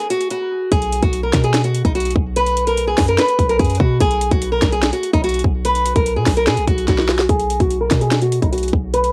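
A boxy, woody fingerpicked acoustic guitar with old strings and a low-pass filter carries a dreamy, wistful half-time trap melody over an electronic kit of tape-warmed finger snaps, metallic hi-hats, a sharp snare and a hard-clipped kick, joined at 0.7 s by a punchy, heavy 808-style sine bass with a noise layer, all in a dry home cassette recording cut from a longer piece, with a drum fill at 6.9 s leading into a new section at 7.3 s.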